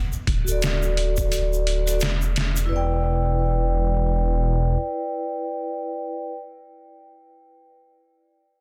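Trip hop excerpt with a dark, melancholic mood, swung in 4/4 and moving from D to Em7. A soft-handed tube shaker and a gritty, pitched-down sampler-style drum kit with a thumpy kick and medium-tuned snare both stop at 2.7 s, while a deep, rumbling detuned saw bass sits up front until 4.8 s. A metallic, ringing vibraphone played with medium mallets and its motor off carries on to 6.4 s through harmonic tremolo, a low-pass filter and tape echo, and the whole mix is dry, dense and heavily limited.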